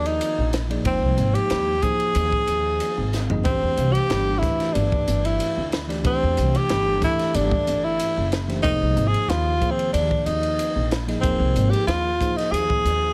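Electric jazz fusion at 93 BPM in a straight 4/4, funky and intense, cut from a longer piece, with a clear tenor saxophone up front carrying the solo melody between C4 and Ab4 with light vibrato and a soft attack, over a bell-like tine electric piano and a woody, thumpy pizzicato upright bass on gut strings. A crisp acoustic drum kit with a high-tuned snare, tight kick, hi-hat, ride and toms plays a fill at 3.1 seconds, and the harmony moves from Fm7 to Am11 and then Fm11. Light reverb and a small room ambience surround the whole recording, with a pumping room sound on the kit.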